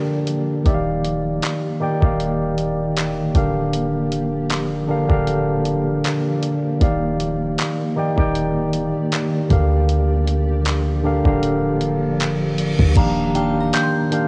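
Smooth and tender, this contemporary R&B piece moves at an unhurried 78 BPM in Eb major, with a gentle swing on the sixteenths and a home-cassette character to the whole recording. A tine electric piano sits up front from the start, its clean tone carrying the chords, while a cloudy, evolving granular pad hovers in the background, bathed in its own reverb. A dusty, sampler-style kit with a thumpy kick, hi-hat, handclaps and crash brings compressed 12-bit grit, and a clean 808-style bass with a deep, boomy sine tone enters at 0.7 seconds after a brief break. The harmony drifts between Gm7 and Ebmaj7 chords, and an electronic reverse cymbal rises into a new section at 13.0 seconds. There a delicate, bell-like celesta with a cassette-tape tint takes the melody high in its range, joined shortly after by a crystalline FM synth bell with chorus and tape echo before the cut.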